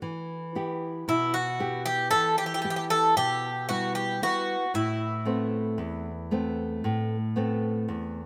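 Tender and warm, this short cut from a longer Greek folk piece moves at 114 BPM in a straight 9/8, with a fingerpicked classical nylon-string guitar sounding fresh-strung and close as it carries the accompaniment from the start, shifting from Em to Amadd9 at 4.7 s. At 1.1 s a bright, metallic Greek bouzouki enters up front with the melody, its picked double strings, some doubled at the octave, ringing over the guitar until 7.9 s. A moderate plate reverb lends the band a gentle, lingering bloom.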